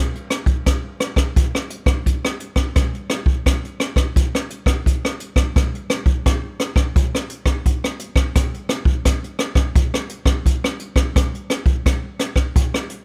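A jazz brush drum kit carries this short samba cut from a longer piece, playing alone from 0.2 seconds to 13.0 seconds in a straight 4/4 feel. Brushes work across the hi-hat and a rim click while a boomy kick sits beneath, giving the groove a lively lift with a yearning edge. The kit sounds acoustic and natural, placed up front in a studio room. Close, detailed microphones and little reverb keep every stroke dry and intimate.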